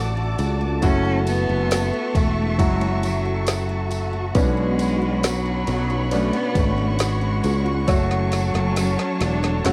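A lightly reverberant home cassette recording carries this heartbroken pop ballad in F# minor at 68 BPM, cut from a longer piece, where a rich, close solo cello sings the bowed melody with vibrato over a clear grand piano whose action noise and long sustain sit intimately present, while a studio string section holds smooth, expressive chords with portamento. A growly, up-front fretless electric bass sustains underneath, a very quiet ladder-braced acoustic guitar picks arpeggios, and from 0.4 seconds a layered electronic deep house kit with a deep kick, woody snare and ride joins a jingly tambourine set distant in a large room. The drums play a fill from 7.9 seconds, and at 8.8 seconds a focused, bowed cello section adds a brief second line as the chords move from D through F#m7 and Bmadd9 back to F#m.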